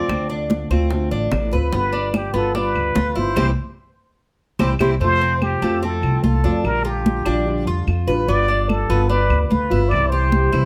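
Sunny and danceable, this short excerpt of Cuban son and guajira moves at 146 BPM in F major, led up front by a breathy, wah-wah plunger-muted trumpet in a jazz-style solo with scooped notes, light vibrato and plate reverb, over a woody, thumpy pizzicato upright bass with gut strings. A small, fingerpicked nylon-string guitar supplies the accompaniment while a bright, metallic Cuban tres with double strings picks arpeggios, and in the background sit damped, high-tuned congas, woody claves, and round, low-tuned bongos struck with hard hands that drop out at 4.9 seconds. A band accent from 3.4 to 5.0 seconds, capped by a drum fill at 4.8 seconds, marks the turn into the second pass through the section over chords moving from Dm7 and G7 to C, then F, Bb6, G7 and C.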